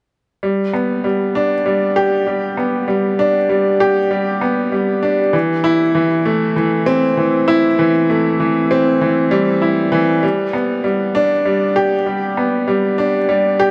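Hopeful and luminous, this electronica excerpt in G major at 98 BPM features a solo upright piano, brilliant and woody with audible action noise and long sustain, placed intimately up front with digital delay from 0.4 to 13.7 seconds, set within a huge ambient reverb that rings for 4.5 seconds.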